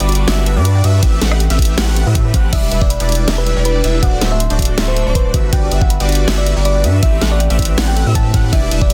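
A lush, bright future bass passage at 160 BPM in G major with a half-time feel opens on a fat, detuned sawtooth polysynth riff with chorus and phaser, a thick, saturated sub bass, a dubstep kit with a huge snare, hi-hat, rim click and crash, a tine-like thumb-piano-like pluck arpeggiating in the background, and an airy, dreamy lead arpeggio with vibrato and portamento, both carrying chorus and dub echo, with sidechain pumping on every synth and the bass, before a knocking, up-front electronic kick enters at 1.0 seconds and a round, gentle pluck melody with digital delay arrives at 2.5 seconds over Gmaj7, Am9, Em7 and D7 in a dense, heavily limited modern master.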